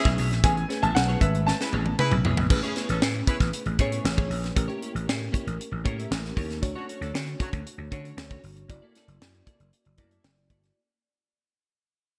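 Urban and upbeat, this cut from a polished 1980s jazz-funk pop track opens with an intimate baby grand piano melody, its action noise audible, alongside a horn section with light vibrato carrying a second line; the piano stops at 1.9 s. Beneath them, a growly, punchy slap bass and a tight funk drum kit with a high-tuned snare sit up front, while a sparkling, bell-like FM electric piano comps and a twangy, compressed clean electric guitar riffs in the background. A drum fill runs from 1.5 to 2.5 s before the music begins fading out, with the horns returning briefly, all framed by light reverb and bright digital 1980s-style production.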